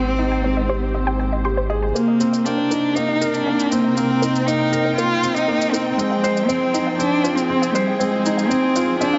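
A straight 4/4 pulse at 119 BPM carries this moving, cinematic piano and strings electronica in C minor, where a single dark, expressive cello with vibrato and portamento sings the melody up front through digital delay over woody, bowed sustained chords from a studio string section and a soft, mellow felt-muted upright piano riff echoed by delay, while a round sine sub bass sounds only until 1.9 s, a detuned sawtooth unison pluck adds delayed arpeggios in the background, and an electronic shaker enters at 2.0 s as the build-up begins, with the whole mix sitting in a lush hall reverb.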